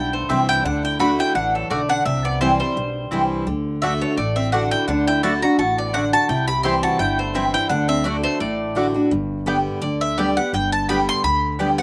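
A lightly swung 4/4 at 170 BPM drives this lively, rustic bluegrass excerpt in D mixolydian, where an up-front, woody mandolin carries the melody over chords that rock between C and D before settling on G at 9.1 s. Beneath it, a nasal, metallic lap resonator guitar played with slide and fingerpicks adds a second line coloured by slapback echo until 9.0 s, while a bright, full-bodied acoustic guitar picks the accompaniment with audible finger squeak. A second, rounder mandolin punches in stabs, and a dark, growly pizzicato upright bass anchors the bottom, all captured dry in an open-air sound.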